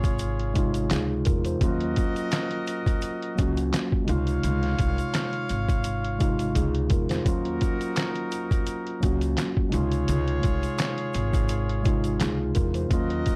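Dry, gritty cassette-tape sound frames this dark, moody boom-bap hip-hop excerpt, where a muffled, pitched-down sampler-style drum kit with thumpy kick, medium-tuned snare, handclaps and hi-hat sits up front beside a mellow, clean tine electric piano, while a woody pizzicato upright bass on gut strings anchors the low end, a jazz-style trumpet section with light vibrato adds analog-delayed stabs, a grainy egg shaker rustles in the background, and a drum fill breaks in at 6.6 seconds.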